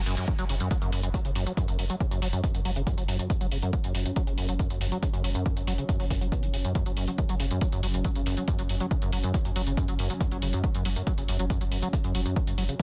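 Squelchy, resonant sawtooth acid bass leads this driving peak-time techno excerpt, its riff sitting up front between F#2 and F#3 with analog chorus, a cassette-tape grain, digital delay and sidechain pumping. At 139 BPM in a straight 4/4, the mood is industrial and relentless, anchored by a punchy analog kick and layered, metallic electronic hi-hats, both re-recorded in a small room. Underneath, a thick, saturated sub bass holds F#1 from the opening second, its tube saturation and low-pass filter giving it weight while sidechain pumping makes it breathe with the kick. From 2.7 seconds a deep, moody ambient pad drifts in the background between F#3 and C#4, detuned and dark with a moving notch, chorus and its own reverb, also pumping against the beat. The sound is dry overall, with a dense, heavily limited modern master, and the excerpt is cut from a longer piece.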